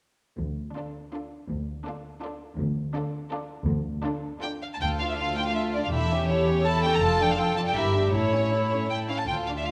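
A quick classical-period movement for symphony orchestra in D minor, this stormy, restless passage moves at 163 BPM in 3/4 with a rubato feel, cut from a longer piece. Double basses and cellos enter together at 0.4 seconds, the basses dark and intimate, the cellos woody with fuller vibrato, all bowed sul tasto. At 0.8 seconds the violins join, the first section carrying an up-front melody with light vibrato and soft attacks, while a second, richer violin section adds a counterline beneath it. Violas fill in the accompaniment with a pure, floating tone. The harmony sits on D minor before shifting through A7/E, Dm/F and Em7b5/G to land on A as the second section closes, all bathed in a recital-hall reverb.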